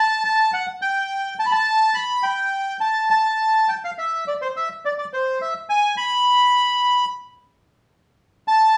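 A lone bandoneon opens this short tango excerpt, its reedy, boxy voice sitting up front as it plays a sultry, dramatic line between C5 and B5. The 4/4 pulse at 106 BPM is stretched with a rubato feel, and the solo runs from 0.0 to 8.8 seconds. A moist studio reverb and the sense of a live room lend the instrument an intimate, close-quartered ambience.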